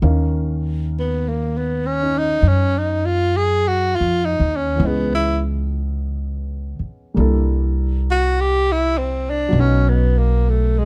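A breathy tenor saxophone carries the melody up front from 1.0 seconds, its subtone sound shaded with light vibrato and scooped notes in a jazz style. Beneath it, a dark grand piano with short sustain provides mellow accompaniment while a woody pizzicato upright bass holds the low end in this melancholic, intimate jazz ballad excerpt. The piece moves at 51 BPM in 4/4 with a swung feel in Eb minor, passing from Ebm9 through Dbm7 and C13 to B, captured with close, detailed microphones and light reverb.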